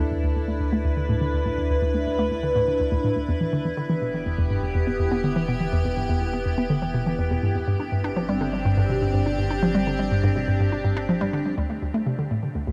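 A hollow square-wave pluck stands out up front, playing a bouncy, detuned riff with a fast attack, short decay and a noise layer, dressed in chorus and tape echo, while a filter sweep runs across the arpeggio through the first 11.6 seconds. This is ambient, sequencer-driven space music in D dorian at 123 BPM in a straight 4/4, expansive and mysterious in mood, cut from a longer piece. Alongside it, also up front, an evolving wavetable pad holds sustained chords, its morphing unison tone shaped by a slow attack, long release, chorus, phaser and its own reverb. A round analog bass anchors the low end with a deep, mellow, wave-folded tone as the chords move from Dsus2 through Em and Gsus4, and it stops at 11.6 seconds, where Dm arrives. A huge ambient reverb with a long tail surrounds the parts, giving the space a vast, drifting sense of distance.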